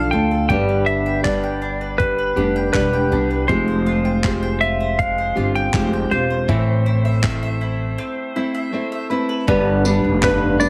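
Acoustic pop at 80 BPM in 4/4 with an easy-going, heartfelt mood, cut from a longer piece and moving through Dm, G, Fmadd9 and Amadd9 chords. A dark, clean lap steel guitar carries the slide melody through plate reverb over a warm, fingerpicked nylon-string guitar, a round mandolin playing arpeggios on double strings, and a woody pizzicato upright bass with gut strings up front. A gritty, sampler-style soul drum kit with a thumpy kick, handclaps and tambourine enters at 0.5 seconds, a break arrives at 8.0 seconds, and the whole mix has a heavily compressed radio sound in a moderate studio room.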